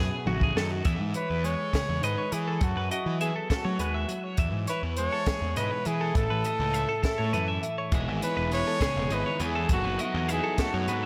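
Intricate and playful, this short excerpt of math rock and midwest emo moves in a straight 6/8, opening on a brief drum fill from a compact cocktail kit whose high-tuned snare and punchy kick sit dry and up front. Two bright, twangy twelve-string electric guitars ring out clean and compressed, one carrying the chordal accompaniment with a warbly pitch drift and the other spinning picked arpeggios higher up, both touched by slapback echo. Beneath them, a fuzz-laden picked electric bass growls with overdrive, sitting close and prominent. From 1.2 seconds a clear trumpet takes the melody, close-miked and soloing in a pop style with vibrato and scooped notes, trailed by slapback and tape echo. At 7.9 seconds a crunchy, double-tracked overdriven guitar slips in behind with a riff, while a lush hall reverb lends the whole mix a big arena sound as the chords circle through major-seventh and suspended colours.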